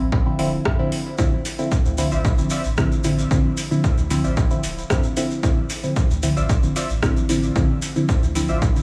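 Dub techno with a cavernous, deep mood, built on a single Dm9 chord, where a soft, round sub bass and a punchy electronic kick enter from the opening second, the kick re-recorded in a large room and sitting up front. A dark, mellow chord stab with filter sweep, chorus, phaser and dub echo pumps with sidechain compression, joined by an overdriven deep house kit of metallic hi-hats and rim clicks and a grainy shekere entering at 1.2 seconds. From 2.1 seconds a warbling, detuned lo-fi synth riff adds a nostalgic glow through chorus and dub echo, all set in light digital ambience in this short cut from a longer piece.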